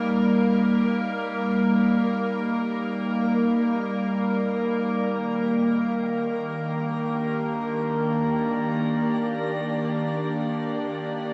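Ambient music in free time and Eb major, this weightless, peaceful excerpt features a single evolving wavetable pad, up front with chorus, built-in reverb and delay, whose vintage, warbling sine tone morphs across a range from Eb3 to Eb5 with a slow attack and long release, moving from an Eb chord to Ebmaj7 at 5.1 seconds within a dark production bathed in an 8.4-second shimmer reverb.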